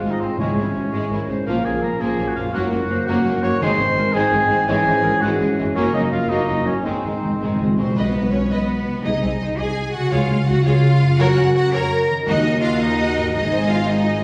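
In a 6/8 at 112 BPM in Ab mixolydian, this soaring, triumphant cinematic excerpt sets a lush, vibrato-rich symphonic violin section on the melody over a faint, distant studio violin section, a rich viola section, a mellow ringing thumb-plucked harp, and a smooth cello and double bass section. Meanwhile a clear oboe, a roomy background clarinet, sustained French horn chords and soft-attack trumpet stabs fill the opening until a round, close timpani fill from 6.9 s ushers in a leaner second section at 8.0 s, all bathed in a recital-hall reverb heard from further back in the room.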